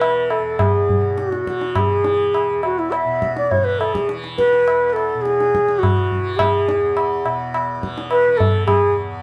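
A straight 4/4 pulse at 104 BPM gradually speeds up in this short, meditative and radiant Hindustani classical excerpt in E raga khamaj, tuned to A4 = 435 Hz. An airy bamboo bansuri carries the melody up front, with soft attacks, vibrato and rolled-off highs. Low-tuned, compressed and saturated tabla with a short ring sits close beside it, while a softly plucked, buzzing, shimmering tanpura drone lies further back, all played live together in one room with a moderate, large studio reverb.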